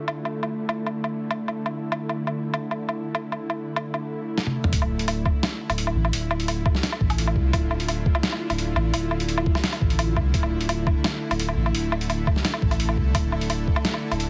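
Cinematic and tense, this half-time drum and bass cut opens on a bright, detuned, string-like drone holding a sustained Dmadd9 chord with vibrato, built-in reverb and sidechain pumping, over a gritty, pitched-down boom bap sampler-style kit of hi-hat, snare, toms and woodblock. A drum fill at 4.4 s leads into the drop at 4.7 s, where a deep, thick sub bass with tube saturation and a thumpy, tape-warm electronic kick join the mix. The overall sound is heavily compressed and radio-like, with light reverb.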